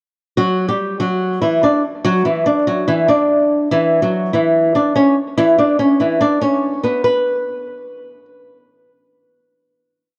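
A fingerpicked acoustic flamenco guitar enters up front at 0.4 seconds with a cold, dark looping melody, doubled in octaves over Em9 and E5 and repeated like a sampled loop for a half-time hip hop piece at 144 BPM, its tone dulled by a low-pass filter, flecked with finger squeak and set in light reverb, until a final note at 7.0 seconds rings out to 8.3 seconds.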